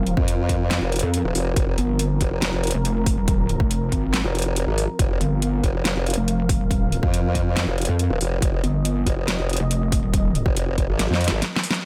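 This heavy, aggressive half-time wobble dubstep excerpt at 140 BPM opens straight into a drop on an F5 chord, with lush, detuned supersaw chords pumping under sidechain and a low-pass filter while a saturated, distorted pluck wobble bass pulses up front in the mix. A formant-sweep wobble bass built from pulse and sine tones wobbles alongside it, and a dubstep kit with a huge snare and metallic hats sits up front over a punchy, tape-warm electronic kick. The dry mix holds its weight until a drum fill arrives at 11.0 seconds and a brief break follows at 11.4 seconds.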